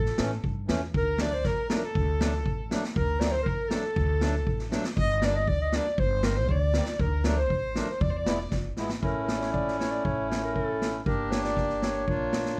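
A dark, lightly reverberant production frames this soulful, bittersweet klezmer excerpt at 119 BPM in 2/4, moving from D phrygian dominant to A phrygian dominant at 9.0 seconds. A soft-attacked clarinet with plate reverb carries the classical-style solo melody alongside a distant, smooth bowed violin with vibrato on a second line until 8.5 seconds. Beneath them sit a reedy, boxy accordion up front, a woody, growly pizzicato upright bass, and a street-band kit with a boomy kick and medium-tuned snare that plays a short fill just before the key change.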